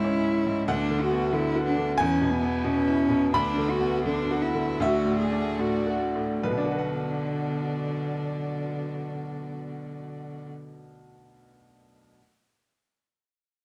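A dark, warm production with light reverb frames this reflective, longing neoclassical passage for piano and strings, cut from a longer piece and moving freely in 4/4 between 70 and 96 BPM in B dorian, slowing through the first 6.4 seconds. A bright, woody upright piano sits up front as accompaniment over chords such as C#m7, E and Dadd9, while a single close-miked cello plays a second line with an airy sul tasto bow and light vibrato, and a shadowy chamber string section holds soft sustained chords in the background. The strings fall away at 10.5 seconds, leaving the brilliant piano alone until 12.2 seconds.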